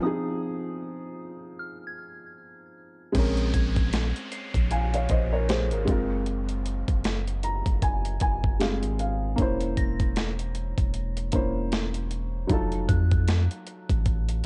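Contemporary R&B with a longing, sensual mood: a muted, boxy upright piano with audible action noise and a pure FM synth bell, treated with chorus, phaser and delay, open the cut, then a gritty, overdriven sampler-style drum kit with a thumpy kick and an electronic downlifter arrive at 3.1 seconds, a deep sine 808-style bass follows just after, and the piano plays a fill at 7.0 seconds, the whole mix carried on worn, warbling cassette tape with little reverb.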